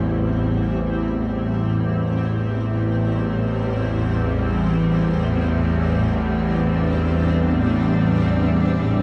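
A tense, string-like bowed drone with a sawtooth edge and vibrato sits up front in A minor alongside a cloudy, evolving granular pad with lush chorus and a very quiet, metallic bronze singing bowl ringing with slow beating, all three sounding throughout this desolate, cavernous 9-second dark ambient drone cut in free time, soaked in dreamy plate reverb.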